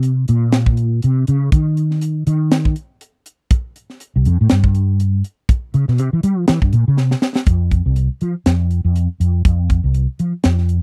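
A swung sixteenth-note pulse at 121 BPM in 4/4 drives this short electric jazz fusion cut, lifted from a longer piece, with a driving, nocturnal mood and tuning set to A4 = 438 Hz. A crisp acoustic kit plays throughout, its hi-hat, punchy kick and high-tuned snare sounding airy and polished in the studio room. The fretless electric bass takes a solo from the start, ranging from C2 to G3 with a dark, round, amped tone thickened by ensemble chorus. A drum fill at 7.0 seconds leads into the next section at 7.5, where the solo gives way and both parts carry on until the cut ends at 10.8 seconds. Bass and drums sit up front in a dry, close 1970s-style studio sound with little reverb.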